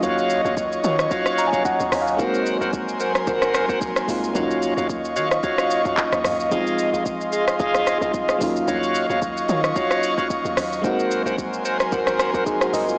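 Hypnotic and late-night, this amapiano excerpt moves at 111 BPM in Eb dorian with a swung sixteenth feel, cycling through Ebm9, Ab9 and Fm7 chords. An up-front afro-pop kit of deep kick, smooth hi-hat, handclaps, rim click, shaker and toms plays alongside a round, dark log drum bass, while a mellow FM electric piano plays a fill at 1.1 seconds and an airy, breathy pad with chorus pumps under sidechain. A reedy tonewheel organ with key click, slow rotary speaker and tape echo stabs until 12.4 seconds, all set in a moderate scoring-stage reverb and a blown-out, overdriven, small-speaker sound.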